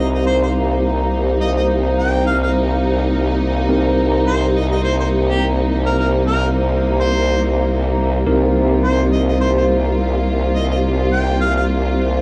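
Funky and swaggering, this glitch hop passage struts at 105 BPM in 4/4 with a light 16th-note swing, sitting in C minor on a single Cm7 chord. Up front, a formant-sweep wobble bass holds a low C2, its sawtooth-and-sine tone wobbling through a formant filter with a fast attack, compression and chorus. A distant, roomy harmonica carries the melody in a classical style with light vibrato and tape echo, stopping at 11.6 seconds. Beneath it, a dark chamber string section sustains bowed sul tasto chords with a soft attack and an intimate, close, smooth top. In the background, a bell-like tine electric piano plays bright stabs coloured by 12-bit sampler grit, tape echo and a low-pass filter that sweeps throughout, while a cloudy granular pad drifts and evolves with slow attack and its own reverb. The dry, gritty hardware recording carries only light reverb, and the passage is cut from a longer piece.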